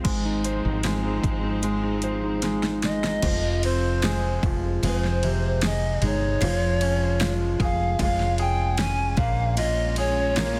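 A dense, heavily limited modern mix with light reverb and small room ambience carries this heartbroken, longing pop ballad in F minor at 76 BPM, cut from a longer piece. A clear, polished baby grand piano and a picked steel-string acoustic guitar with audible finger squeak play throughout. Beneath them sit a round, up-front fretless bass and a deep house drum kit with a deep kick, fat snare and metallic hats, whose fill leads into the second section, while a lush, bowed string section in the background sounds at the start and returns at 9.6 s. From 2.8 s an airy pan flute with vibrato and a soft attack carries the melody, distant and expressive, over chords moving through Fm7, Db/F and Bbm7.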